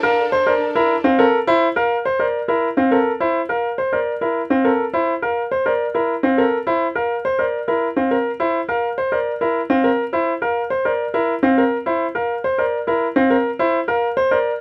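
Propulsive and bright, this minimalist classical pattern piece in 3/4 sets an intimate concert grand piano melody, its action noise audible, over a second grand piano's open, long-sustaining arpeggios, both up front through the whole 14.5 seconds, while a lush, bowed symphonic string section with vibrato holds a sustained chord only for the first second, all captured with close, detailed microphones and light reverb.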